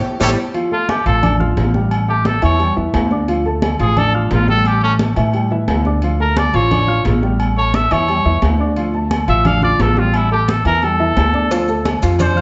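A drum fill and a full-band accent open this passionate, danceable salsa passage, cut from a longer piece, with cowbell and maracas sounding briefly before dropping away. At 0.7 seconds a clear, punchy trumpet takes the lead for a solo that runs to the end, played up front in a pop style with light vibrato and a vintage edge. Beneath it, a growly, woody upright bass, played pizzicato, sits prominently, while a dark baby grand piano supplies mellow, intimate accompaniment with long sustain and audible action noise. High-tuned congas with a bright, thin skin keep to the background, and ringing timbales and agogo bells sound distant, as if in a large room. The cowbell and grainy maracas return at 11.5 seconds, and the whole band sits in a moderate large studio reverb with a rolled-off top end.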